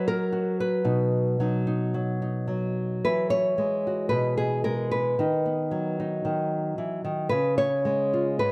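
Loose and rubato in 4/4, this brief folk fragment, cut from a longer piece, places a lone fingerpicked nylon-string guitar small and up front in a dark, warm mix with light reverb, moving from a chordless opening onto B at 0.9 seconds, then through Eadd9 at 3.0 seconds, B/D# and C# in a pastoral mood.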